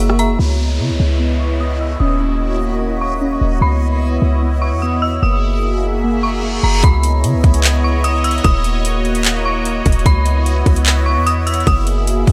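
Awash in light reverb and digital ambience, this ethereal, melancholic cloud-rap excerpt at 149 BPM in a half-time feel pairs an eerie, inharmonic FM synth bell melody and an airy, detuned sawtooth pad with sidechain pumping over a deep, boomy sine 808 bass, while muted felt-like keys arpeggiate in the background until 6.8 seconds, a reversed granular texture drifts beneath, an electronic downlifter and reverse cymbal lead into the trap kit of hard-clipped kick, metallic hats, handclaps and rim clicks, which sounds briefly at the very start and then returns in full at 6.8 seconds, and C#m9, D#m7 and F#9 chords cycle in C# dorian.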